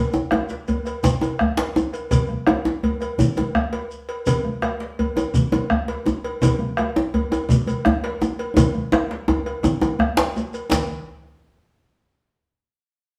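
Powerful and earthy, this West African traditional drum ensemble moves at 112 BPM in a straight 12/8 feel, with two djembes: one deep and roomy, the other medium-tuned, close and dry, struck with hard hands up front. A grainy, mellow shekere, a round, close bombo and a metallic cowbell fill out the group from the first second, while soft-handed, thick-skinned congas with a vintage, band-limited tone join from the background at 2.1 seconds. A drum fill runs from 8.6 to 10.7 seconds in this cut from a longer piece, and the live-in-one-room playing sits in a wet studio reverb.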